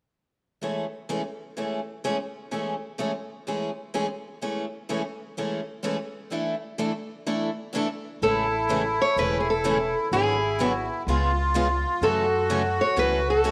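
A moderate plate reverb gives this lively, charming excerpt of acoustic string swing in the jazz manouche style a roomy glow, with several parts set up front. At 126 BPM in 4/4 with a swung eighth-note feel in A major, two picked steel-string acoustic guitars open the cut at 0.6 seconds with accompaniment over Amaj7/E before moving to E7sus4. At 8.2 seconds a third picked guitar takes the melody while an accordion adds a second line and an upright bass enters underneath. The harmony then moves through Amaj7, G#m7b5 and C#7 to F#m7, running until 13.5 seconds. Of the guitars, one has a dark concert tone with audible finger squeak, and the other two are bright, boxy parlour instruments, one with fresh strings. The accordion sounds reedy, sweet and airy with a light tremolo tuning, and the pizzicato bass on gut strings is woody, dark and thumpy.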